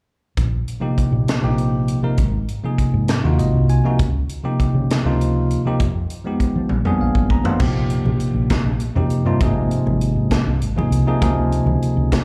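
A steady, straight 6/8 sway drives this nocturnal, slick electric jazz fusion passage, cut from a longer live club set heard through the venue's sound system, where a bell-like tine electric piano sits up front over a growly, woody fretless bass and a crisp, roomy drum kit with a high-tuned snare, piano and drums both dropping in fills at 6.7 seconds before ringing, softly played congas slip into the background at 7.6 seconds, the band bathed in club reverb.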